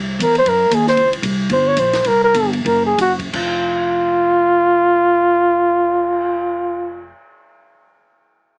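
Heavily compressed, radio-like small-speaker sound with light reverb frames this short, moody and cool cut from a longer small-group swing and bop piece in 4/4 at 163-233 BPM, slowing down between 1.0 and 3.3 seconds, where an up-front, breathy flugelhorn sings a mellow, scooped, vibrato-laden melody from F4 to Db5 over a woody pizzicato upright bass and a dry, compact cocktail drum kit with dark cymbals, a high-tuned snare and a tight kick, through chords including Gb, Gmadd11 and C5.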